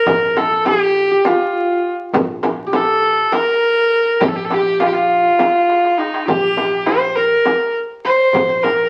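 A soulful, melancholic Turkish makam ensemble piece cut from a longer work, moving in a straight 7/8 at 203 eighth-note beats per minute. Up front, a single bowed kamancheh carries the melody with a bright, earthy yet distant tone, light vibrato and portamento. In the background, a plectrum-plucked, triple-strung qanun plays a bright-edged second line, joined by a dark, woody, thumpy pizzicato upright bass on gut strings and a crisp metal-shell darbuka played with hard hands. A close, dry frame drum sits a little more forward in the percussion, a drum fill arrives at 5.7 s, and the recording carries studio reverb along with the vinyl crackle and lossy compression artefacts of a very old 78 rpm record.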